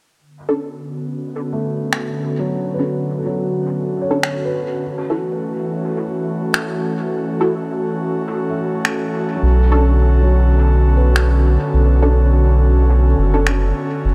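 At 104 BPM in 4/4 with a gentle swing on the sixteenths, overdriven electronic finger snaps carrying dub echo set a meditative pulse for this spacious ambient dub excerpt in B minor, moving from Bm9 to F#m7 and back. An airy, breathy pad with chorus holds sustained chords up front, while muted, detuned sawtooth chord stabs sit in the background and a felt-muted upright piano plays dark, intimate arpeggios with audible action noise, all three under filter sweeps and the stabs and piano trailing dub echo. A deep, round sub bass enters at 9.4 seconds, anchoring the close in light digital reverb.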